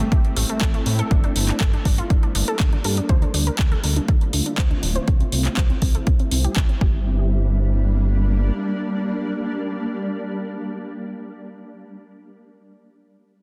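Progressive house at 121 BPM in G dorian, dreamy and bittersweet, this excerpt moves through Am, Gm, Dm7 and C under a shimmering, ethereal ambient pad with chorus and built-in reverb and a lush, warbling unison pluck playing arpeggios through dub echo, both pumping against the sidechain. A fat, detuned analog bass sits up front with its own sidechain pumping, while a punchy, overdriven electronic kick and a house kit with bright hats and handclaps drive the groove, and a very quiet electronic impact marks the opening. Filter sweeps run across the bass, pluck and pad until 7.1 s, the drums drop out near 6.9 s, and the bass stops at 8.5 s, leaving the pad and pluck to carry the final bars.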